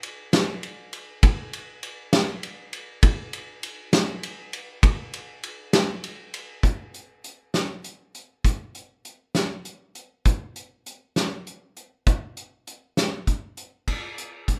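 A bittersweet, yearning mood hangs over this short folk fragment, cut from a longer piece and carried entirely by a loose indie drum kit in a straight 6/8 feel. The acoustic kit sits in a roomy studio space, somehow both distant and up front, with a fat snare, a punchy kick and dark cymbals across crash, ride and hi-hat. The first section gives way to a second at 6.6 seconds, and a drum fill at 13.9 seconds closes out the passage. There is little reverb, and the mix has the rough, unpolished character of a home demo, which suits the music's wistful, unguarded tone.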